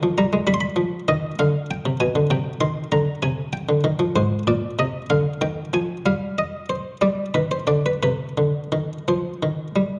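Classical baroque-style suite movement in C minor, this 10-second fragment of a longer piece features a solo buff-stop harpsichord with a flowing, solemn mood, moving in a rubato 12/8 at roughly 57-68 BPM counted in dotted quarters. The French-style harpsichord sounds muted and lute-like, its plucked tone sitting mid-forward and up front while it spans Ab2 to C6 over a progression that moves from G7 to Cm, through Fm/Ab and a bare G5, and settles on Cm at 8.0 seconds. A dark production places the instrument on a reverberant scoring stage with a 1.8-second decay.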